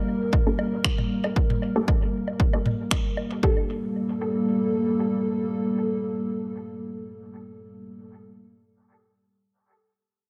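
A straight 4/4 pulse at 116 BPM from a punchy, tape-warm electronic kick, up-front finger snaps and dub-echoed woodblock and toms drives this meditative, hypnotic dub techno in G minor until about 3.5 seconds, while a dark, wave-folded analog pad with chorus and sidechain pumping sustains Gm, moving to Gmadd9 at 3.4 seconds, alongside a muted, detuned sawtooth chord stab treated with a filter sweep, phaser and dub echo, set in a dreamy, reverb-soaked mix with lossy artefacts.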